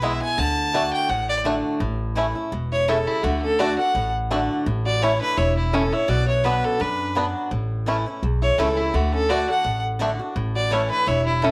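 A clear, focused fiddle bowed with light vibrato carries the melody up front over bright, boxy picked swing-style acoustic guitar with finger squeak, twangy, percussive fingerpicked banjo arpeggios and a woody, thumpy gut-string upright bass, with a metallic, nasal lap resonator guitar played with slide and fingerpicks joining on a second line at 2.7 s, giving this lively, rustic bluegrass excerpt a swung feel in a small room with wet spring reverb.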